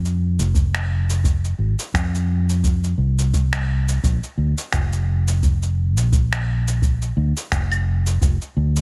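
Sunset chillout excerpt at 86 BPM in 4/4 with a 56% sixteenth-note swing, relaxed and warm, built on a dark, round, punchy fingered electric bass sitting up front between F1 and F2, a deep, tape-warm analog electronic kick drum entering at 0.5 seconds with a large-room character, and a quieter gritty, overdriven layer of sampler-style electronic cabasa, finger snaps and claves carrying a small-room sound, all in a dry mix.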